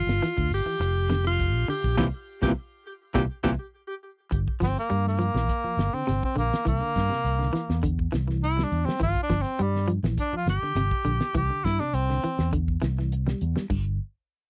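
Hypnotic and driving, this afrobeat groove in straight 4/4 is cut from a longer piece and captured in a dry, close 1970s-style studio sound with little reverb. A round, amped fingered electric bass sits up front beneath a damped 70s drum kit with a fat snare, tight kick and dark cymbals, while a clean, twangy electric guitar picks bright arpeggios through a tremolo effect. A punchy, forceful alto saxophone carries the opening melody with light vibrato and tape echo, giving way by 3.5 seconds as the band hits accents and the drums play a short fill. From about 4.6 seconds a breathy tenor saxophone takes a whispered, intimate solo with a soft attack, running until about 12.5 seconds over chords that move between Gm7 and C-based harmonies. The guitar, bass and drums carry on to the end, with the chords dropping out at 13.7 seconds.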